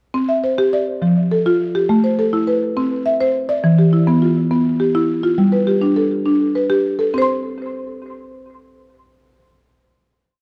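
Warm and rippling, this short, complete Southern African traditional piece moves in a straight 12/8 at 137 BPM in C major, carried by a solo buzzing marimba played with medium mallets. Its woody, buzzing hardwood bars sit up front, spinning an interlocking ostinato from E3 to C6 over C, F, Am, Em and G, with tape echo and a moderate recital-hall reverb. The production has a dark, warm sound, and a final note rings from 7.1 seconds until the piece ends at 10.4 seconds.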